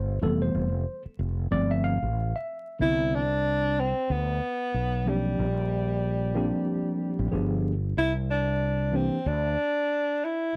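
A breathy tenor saxophone enters at 2.8 seconds with a mellow, whispered subtone, soft attacks, scooped notes and vibrato, sounding distant and roomy yet intimate as it carries the jazz-style melody. This relaxed, warm jazz-hop cut in C major moves at 93 BPM with a 16th-note swing, opening on a worn, slightly out-of-tune tine electric piano heard through its built-in speakers, alongside a round, punchy fretless electric bass. The chords drift from Fmaj9#11 through Cmaj9 and Bb6 to a closing Csus2, all set in a dry, close 1970s-style studio sound dusted with vinyl crackle.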